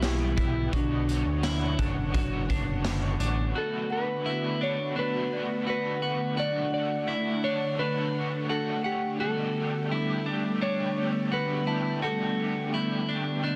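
A dense, heavily limited mix with moderate studio reverb carries this ethereal, melancholic dream pop fragment, where a slide lap steel guitar sings the melody through tape echo over vintage string-machine violas, soft-attacked and chorused, holding sustained chords. Beneath them, a dark, clean electric guitar picks arpeggios with subtle chorus and tape echo, while a bright, crunchy overdriven guitar adds tremolo-and-chorus accompaniment and a delicate, bell-like celesta glimmers in the background. A gritty, boomy garage drum kit with tambourine and a fat, nasal analog bass sit up front only until about 3.5 s, leaving the guitars and strings to drift on as the chords move from Bm7 toward Gadd9/B, while the celesta fades out near 6.7 s before returning briefly toward the close.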